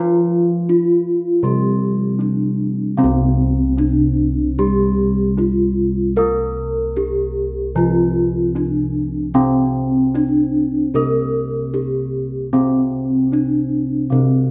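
A straight, unhurried pulse in four sets the pace for this serene, shimmering passage of Javanese gamelan, cut from a longer piece. Up front, a bronze metallophone carries the melody, struck with padded disc mallets for a mellow, soft tone, and its paired tuning produces gentle shimmering beats. Beneath it, a second metallophone plays accompaniment an octave-range lower; a wooden mallet gives it a more airy, ringing quality. Also up front, bossed gongs anchor the bass with a round, dark and smooth metallic voice that has a beating quality. All three parts play throughout, with the music moving into a new section at 3.0 s and continuing to 14.5 s, while a moderate recital hall reverb lets the tones bloom and linger.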